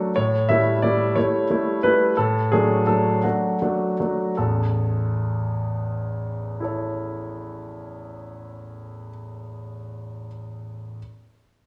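A concert grand piano opens alone, its tone clear and polished, placed up front with an intimate closeness that lets the audible noise of its action come through. This is a graceful, cheerful classical-period sonatina in a straight 6/8, heard as a fragment cut from a longer piece. Over the first 4.4 seconds the pace eases and slows as the harmony moves from an A7 chord to D over A, settling onto A at 4.4 seconds, where a new section begins. The piano spans from a deep bass register up to the middle of the treble. A moderate recital-hall reverb, with a touch of small-room ambience, gives the solo instrument a natural sense of space until it stops at 11.0 seconds.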